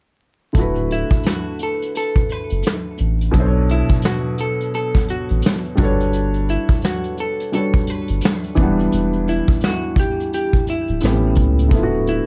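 A soft, intimate felt-muted upright piano sits up front with its top end filtered, carrying the chords of this cosy, mellow lo-fi hip hop cut from D6 through Bm9, Gmaj9#11 and Em7 to A7, then back to D6 at 11.7 seconds. Vintage brushed drums with a punchy kick and rolled-off top share the foreground with a deep, round sub bass over a swung 16th-note feel. At 0.9 seconds a dark, clean hollow-body electric guitar enters more quietly with a filtered, tape-echoed melody, all set in a small room's reverb over a bed of vinyl crackle.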